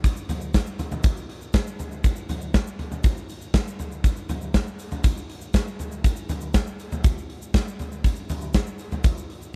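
Dry and close overall, this short driving, dramatic pop clip at 120 BPM in a straight 4/4 puts a huge acoustic arena drum kit up front, its punchy kick, medium-tuned snare, hi-hat and toms carrying a hall-like, pumping room sound, while a grainy, bright egg shaker sits close and dry in the background throughout.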